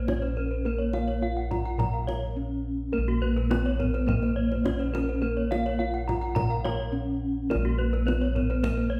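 Heard from further back in a reverberant recital hall, this brief cut from a longer Balinese gamelan piece has a shimmering, brilliant character in a straight four-beat metre. A bronze metallophone carries the melody, struck with padded disc mallets for a mellow, soft, warm tone with a boxy small-room quality. Two more bronze metallophones play arpeggios above it with horn mallets, one bright and airy, the other dark and smooth, and the paired tuning of all three metallophones produces ringing, shimmering beats. Underneath, round, beating bossed gongs hold the bass with padded beaters, sounding mellow and up front. A tight, acoustic kendang with its own small-room sound supplies the percussion, and the ensemble pauses for short breaks at about 2.1 and 6.6 seconds.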